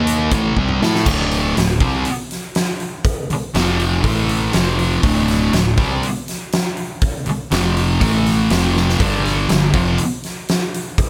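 A thick, double-tracked fuzz guitar riff and a growling, bright overdriven fingered bass open this driving, raunchy blues rock power trio and southern rock excerpt at 121 BPM in a straight 4/4, joined at 0.1 seconds by a huge, natural-sounding arena drum kit with a fat snare and punchy kick that plays fills at 0.6 and 8.8 seconds, as the up-front guitar churns through power chords on A, D, F and G under light reverb.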